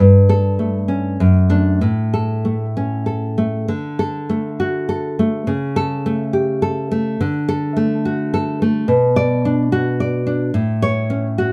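A moderate studio ambience surrounds an up-front, dark-toned nylon-string guitar, with finger squeaks audible as it is fingerpicked through this brief, nostalgic excerpt cut from a longer romantic piece. In 3/4 with a rubato feel hovering between 93 and 111 BPM, the solo classical guitar moves through D major harmonies, opening on A7/G and settling into a new section at 3.7 seconds. That section passes through D, Bm and F#m/A before the fragment closes at 11.5 seconds.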